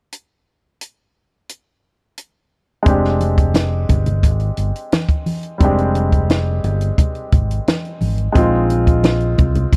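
A straight 4/4 groove opens on a compact cocktail drum kit alone, with a high-tuned snare, punchy kick and hi-hat sounding dry and up front. From 2.8 s a polished baby grand piano adds short-sustained accompaniment in its middle register, and the fingered electric bass comes in with an amped, warm low end alongside bright, thin-skinned congas played with soft hands in the background. This smooth, bittersweet slice of lush 1970s-style soul is captured close in a small room, settling on Fm69 before moving to Bb9sus4 at 8.4 s.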